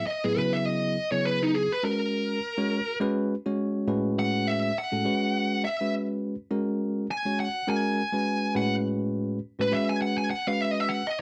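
A swung 4/4 groove carries this nocturnal, intense jazz excerpt, where a dark, distorted, bluesy lead guitar with slapback echo solos up front from start to finish over a bell-like, bright, clean tine electric piano cycling through C#m7, F#, G#m7 and Amaj7 chords, all captured in a dry, close 1970s-style studio sound with light reverb.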